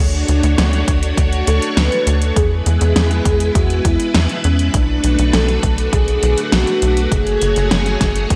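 A velvety, detuned sawtooth synth lead carries the melody over lush vintage string-machine chords with ensemble chorus and a tight, plucky sequencer bass, both pumping to the sidechain, before a pop drum kit with a fat gated snare and metallic hats joins at 0.3 seconds and a punchy overdriven electronic kick at 0.9 seconds, giving this moody, nocturnal synthwave fragment a bright 1980s-style digital sheen over a Dmaj7, E, Bm7 and F#madd9 progression.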